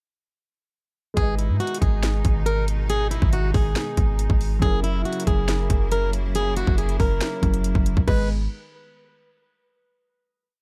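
A dry, up-front mix opens this brooding, dark trap piece in G# minor at 139 BPM in a half-time feel, where a boxy fingerpicked acoustic guitar loops a swing melody over held spread chords from a mellow baby grand piano and a clear bowed string pad with light vibrato, all anchored by a deep, boomy 808 bass with pitch slides and an overdriven electronic kit of hard-clipped kick, sharp snare and bright hi-hat rolls, moving from G#m to F#7 at 4.6 seconds before resolving on a final G#m chord at 8.1 seconds.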